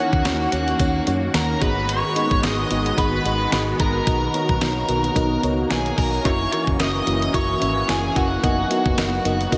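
Awash in a dreamy cathedral reverb, this short cut from a longer 1980s-style pop piece feels nostalgic and uplifting. Its gently swung groove comes from a clean 12-bit drum machine with a thumpy kick, fat snare, hi-hat and tambourine, which enters just after the start together with a round, foam-muted fingered electric bass. Up front, a dark octave-fuzz lead guitar carries the melody over a lush FM electric piano with a soft pad layer, treated with chorus and tremolo, while an airy sawtooth pad sustains chords behind it. High in the background, a shimmering FM bell traces a second line through ensemble chorus and diffuse ambient delay as the harmony moves from D#m7 through G#m7 and Bmaj7 to F#7.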